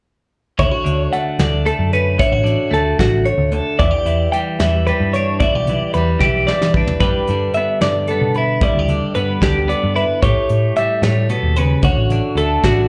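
Twangy twelve-string electric guitar arpeggios ring bright and up front over a second clean, compressed twelve-string guitar playing accompaniment, both carrying slapback echo, in this playful math rock and midwest emo excerpt at 75 BPM in 6/8 and D major, backed by a round, amped hollow-body short-scale picked bass and a dark, smooth soft brush kit with a punchy kick that plays a fill at 6.2 seconds, as the chords move through Dmaj7, Em7, G6 and A7 and back to Dmaj7, captured like a live gig through the venue's PA with small room ambience and club reverb.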